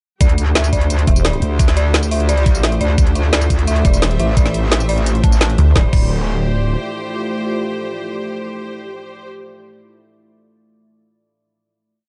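A straight 4/4 pulse at 173 BPM drives this tense, futuristic dark technical drum and bass in D minor, built on an overdriven, knocking electronic kick and a tight, layered kit of woody snare, bright hats, tambourine and crash that runs until 6.0 seconds. A metallic, saturated FM wobble bass sits up front with a heavier, detuned pluck wobble bass, both shaping modulated phrases with changing wobble speed, while an eerie, inharmonic synth bell loops a delayed 3-step arpeggio that drifts against the bar. A deep, moody pad enters at 1.7 seconds with reverb-soaked sustained chords behind a smooth symphonic string section with light vibrato, both pumping under the sidechain in a digital ambience, and they hold the final chord until 9.3 seconds.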